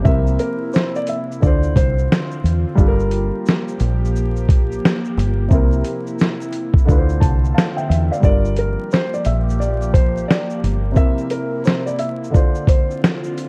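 Lo-fi hip hop excerpt, melancholic and nostalgic, in G dorian at 88 BPM with a swung 16th feel, where a soft, felt-muted upright piano carries an intimate melody with audible action noise that drops away at 2.1 s and returns at 8.2 s, over woody upright piano accompaniment and a detuned, warbling tape-like pad with chorus and phaser cycling through C7, Dm7 and Gm7, all anchored by a round, punchy dub bass that stops at 10.9 s and a gritty, up-front sampler-style drum kit with a thumpy kick, fat snare, hi-hat and shaker, in a dark, warm mix dusted with vinyl crackle.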